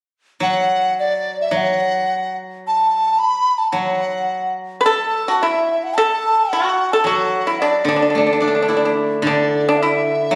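A mellow, hollow large dizi carries the melody from the start, its buzzing membrane, airy tone and vibrato up front in this pastoral, festive excerpt of Chinese traditional chamber music, which moves with a free, rubato feel in 2/4. Beneath it, a fingerpicked steel-string zither rings with a silvery accompaniment, and at 4.8 s a dry, percussive pipa enters with a bright second line, ahead of the music's turn to a new section at 9.2 s. The ensemble sits in a wet recital hall reverb, captured on a phone in the room.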